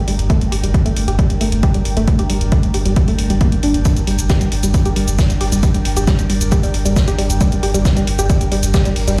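A woody, warbling wave-folded pluck riff with chorus, overdrive and dub echo opens this relentless, driving peak-time techno excerpt beside a breathy pad that fades in under phaser, while a thick saturated sub bass, tape-warm electronic hi-hat and shaker, and an up-front punchy analog kick push everything forward with sidechain pumping on the pluck, pad, bass and hats, before a distant, roomy soft-mallet kit with a fat snare slips into the background at 3.9 seconds, all ringing through a big, bare room.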